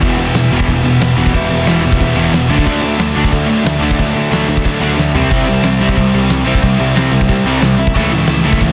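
Raw and angry, this short punk rock cut from a longer piece charges ahead at 182 BPM in a straight 4/4, moving through E minor, D, C and A/C# chords. Three overdriven electric guitars play riffs together throughout: a biting, bright, double-tracked guitar, a dark semi-hollow guitar that stays in the background, and a cranked stack guitar that adds a bright but very quiet layer. Underneath, a growly fuzz-laden picked bass with overdrive anchors the low end. The loose indie drum kit is up front, with a fat snare, punchy kick, dark cymbals and toms in a pumping studio room sound, and a short drum fill lands at 5.0 seconds. The mix has little reverb and a dense, heavily limited modern master.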